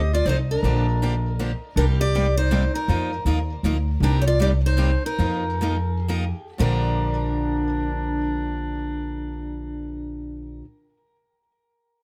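Swinging and charming, this short excerpt of jazz manouche waltzes in 3/4 at 112-160 BPM in Bb major, with a boxy parlour steel-string guitar picking the melody through plate reverb and tape echo, a clear jazz-style clarinet with light vibrato carrying a second line, a woody, thumpy pizzicato upright bass on gut strings sitting up front, and a bright concert guitar picking the accompaniment from 0.3 seconds over chords such as F13, Cm9 and F7sus4, all captured by close, detailed microphones in light reverb as the tempo slows from 4.0 to 6.6 seconds before settling on Bb6.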